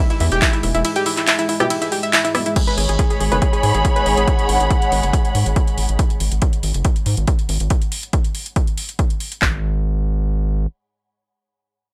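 A gritty, saturated synth bass built from sawtooth and square waves with oscillator sync drives this relentless, dark slice of peak-time techno, sitting up front and pumping with sidechain from 0.2 seconds until 10.7 seconds. Two layered electronic drum kits carry the straight 4/4 feel, one built on a punchy kick and handclaps, the other adding metallic hi-hats, rim clicks, ride and crash, both dressed in studio reverb. A round analog pluck with a sub octave plays a bright riff through chorus and tape echo from the opening drop until 4.2 seconds, while a deep, moody ambient pad drones in the background with its own reverb and a slow attack. A muted, detuned dub chord stab surfaces very quietly between 1.6 and 3.4 seconds, and at 2.6 seconds the harmony moves from E minor to G-sharp minor as a lush, woody string section enters up front with vibrato, pumping along with the bass. The final stretch drops the chords, and once the drums fall away the bass carries the dry, gritty hardware sound.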